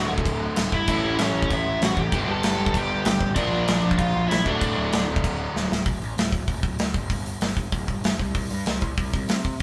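Rowdy and upbeat, this punk rock cut at 193 BPM in straight 4/4 has a live band in a stone room, where a lead guitar through a small cranked amp plays a melody over the first 5.0 seconds above a double-tracked, up-front riff from an overdriven semi-hollow guitar moving through D, A, G and Bb, all driven by a growly fuzz-picked bass and a big acoustic rock kit with a punchy kick, until a drum fill at 5.5 s hands off to bass and drums carrying the D5, G5 and C5 changes from 5.9 s.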